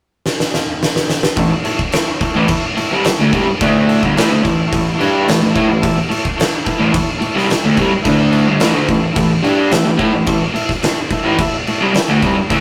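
Rowdy and raw, this fragment of straight 4/4 garage rock opens with an oversized, low-tuned acoustic drum kit playing a fill of punchy kick, fat snare and dark crash cymbal before a crunchy, double-tracked electric guitar riff and a buzzy vintage combo organ holding sustained chords with light vibrato in the background enter at 1.4 s, all captured as a rough, tube-saturated rehearsal-room recording in a stone room where the gritty drums and guitar sit up front.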